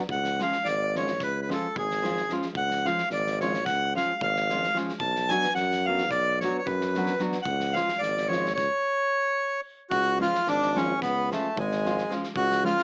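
A reedy, up-front accordion melody, a warm tuba bass line and a muffled, lo-fi kick-and-snare kit open this fiery, restless Balkan wedding-band fragment in 9/8 together, with a fingerpicked nylon-string guitar entering at 0.4 s; the accordion, guitar and drums carry a cassette-tape tint, and the whole cut sounds like a lightly reverberant home recording heard through a small speaker.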